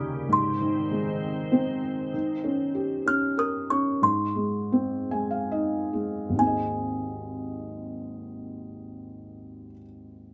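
A delicate, tinkling music box carries the melody up front, its plucked notes sitting high and mellow in a boxy small room. Beneath it, a felt-muted upright piano plays soft, intimate accompaniment that reaches down into the deep bass, adding a fill from 4.7 to 6.4 seconds. An organ-like pad with a slow attack and ensemble chorus holds pure, detuned sustained chords beneath the melody for the opening, stopping at 2.1 seconds. This sleepy, innocent lullaby in Ab major moves in a gentle 3/4, with the tempo slowing between 2.1 and 6.4 seconds as the harmony shifts to Eb7 before settling back on Ab. The sound is close and rounded, with a moderate short room reverb and a dark top end, and the piece is cut from a longer work.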